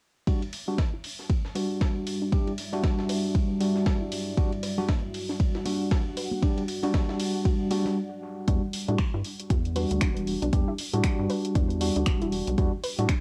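A swung 117 BPM deep house groove in 4/4 rides on an up-front, layered electronic kick, dark hi-hats and finger snaps, with a gritty, pitched-up breakbeat ride and snare underneath and very quiet, dry, high-tuned congas slipping in at 4.8 s. Over a late-night Em9 in E minor, a clean tine electric piano stabs through a sweeping low-pass filter while a soft, warbling pluck arpeggiates in the background and a moody, detuned pad breathes with sidechain pumping. Everything is softened by cassette tape, with tape echo on the piano and pluck. After a brief stop at 8.0 s, a rubbery, bouncy square bass enters on the low end at 8.5 s in this cut from a longer piece.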